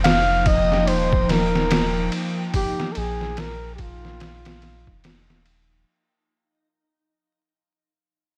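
Set in a light digital ambience with vinyl crackle and fading out across its 5.9 seconds, this smoky, cinematic trip hop fragment moves at a slow 72 BPM with a swung 4/4 feel over an Ebadd9 chord. A dark, veiled trumpet in a bucket mute carries a forceful jazz-style solo up front, coloured by vintage 12-bit sampler grit and dub echo, while a warbling, nostalgic tape-like pad holds mellow, detuned chords through chorus, phaser and reverb. Underneath, a round, deep dub sub bass with tube saturation sits beneath a compressed, pitched-down sampler drum kit with a thumpy kick, and a very quiet reversed, dreamy texture swells in the background.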